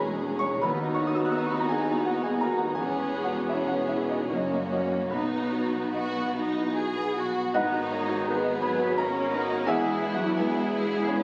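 Passionate and lush, this romantic classical movement for piano and orchestra unfolds in a rubato 3/4 at roughly 72-86 BPM in B major, cut from a longer piece. A clear, smooth grand piano with a vintage, short-sustained tone sits up front carrying the melody across a broad span from B1 to F#6, while a violin section also carries the melody in the background with soft-attack vibrato and another violin section sings a second line. Beneath them, a focused, close viola section supplies accompaniment, mellow French horns hold sustained chords, and bowed cellos, very quiet, join a double bass section to anchor the bass. At 7.5 s the woodwinds and brass arrive: an airy, distant flute ensemble and a solo oboe add second lines, a solo bassoon supplies accompaniment, and a very quiet tuba reinforces the bass, with a roomy, mellow clarinet joining at 7.6 s as the harmony moves to G#m7 and then E. 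The whole ensemble sits in a moderate concert hall reverb, captured on a phone in the room, giving the sound an intimate, slightly distant glow.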